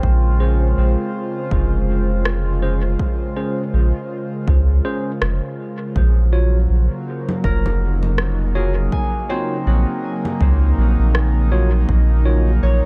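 Ambient dub at 81 BPM in Bb minor, this deep, meditative excerpt drifts over a gently swung 4/4 pulse, moving from Bbm9 to Ebm7 at 6.0 seconds. Up front sits a round, soft sub bass with a fast attack, while an airy, breathy pad with a slow attack and long release holds sustained chords, its detuned layers softened by chorus. A clean tine electric piano places stabs through the piece, each trailed by dub echo. A fingerpicked, ringing concert harp plays arpeggios with a gritty, vintage 12-bit sampler character and dub echo, dropping out at 2.7 seconds and returning at 7.4 seconds. A punchy, layered electronic kick sits in the background, and from 2.3 seconds overdriven electronic rim clicks and congas join, bathed in small room ambience and echo, all under a light reverb.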